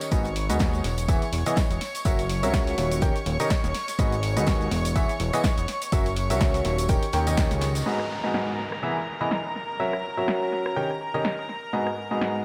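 Bittersweet, soulful piano house at 124 BPM in G# minor opens with a clear, up-front grand piano riff and sustained, biting chamber violin chords, both pumping with the sidechain, while a punchy kick, fat detuned sawtooth bass, tape-warm drum machine hats and snare, and a soft tambourine and shaker drive a swung groove through G#m7, E, F#7 and D#7 until the kick drops out at 7.5 seconds and an electronic downlifter carries the echo-heavy mix from 7.9 seconds.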